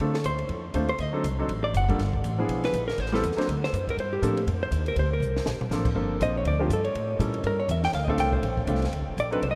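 A dark, clean hollow-body electric guitar sits up front and carries the melody as a solo from 0.2 seconds. Its fingered, compressed tone gives this brief cut from a longer small-group swing and bop jazz piece in G minor a smoky, moody cast. The tempo is a brisk 242 BPM in 4/4 with a swung eighth-note feel, moving through changes such as Dm7, D7b9, Am9 and Gm11. Beneath the guitar, a woody, pizzicato upright bass with steel strings also sits up front, while a clear grand piano with short sustain supplies the accompaniment. A compact cocktail drum kit, dry and acoustic with dark cymbals, a high-tuned snare and a punchy kick, fills briefly at 5.2 seconds. The whole group sounds as if placed in a vast, echoing space with a huge ambient reverb.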